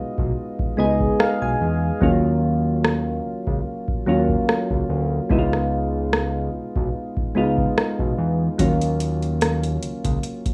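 Contemporary R&B with a longing, sensual mood, this short cut from a longer piece moves at an unhurried pace with a gentle swing on the sixteenths. Soft, round synth keys with an electric-piano character carry the harmony through a chorus effect, adding a brief fill between 0.4 and 2.0 seconds. Beneath them, a fat analog bass with a detuned sawtooth edge and a moving notch holds down the low end. A booming analog drum machine enters at 0.2 seconds with a deep kick, metallic hi-hats and rim clicks, sounding dry and tape-tinged. The harmony alternates between Db7 and Ebm7, and the rough home-demo mix sits in a moderate studio reverb, with all three parts placed up front.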